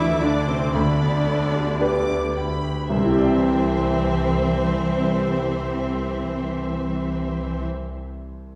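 A wet scoring-stage reverb sets this cinematic, tender and hopeful orchestral passage at a distance, its slow 55 BPM pulse in 4/4 flowing rubato and easing down over the first 2.9 seconds as Dm and G/D resolve to Cadd9. A distant, lush violin section carries the vibrato-laden melody over a focused second violin line, smooth-topped violas, background cellos and even double basses, while a clear concert grand piano with deep, open bass anchors the accompaniment. A very quiet, thumb-plucked harp rings out arpeggios until 8.0 seconds, and the piano lingers after the strings fall away, sounding on until 8.6 seconds.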